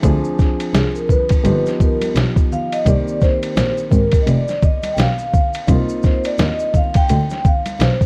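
This nocturnal, mellow jazz-hop excerpt opens on a compressed, pitched-down sampler-style drum kit with a thumpy kick and muffled up-front sound, a bowed, veiled muted double bass, a smooth vintage baby grand piano with long sustain, and tube shaker and congas sitting close and dry in the background. From 0.7 s a soft-malleted vibraphone takes the melody, metallic and ringing with slow motor vibrato, over a swung groove that moves through Dm7b5, Gaug7 and Cm7. The whole track carries small-room ambience, worn cassette warble, vinyl crackle and drifting pitch.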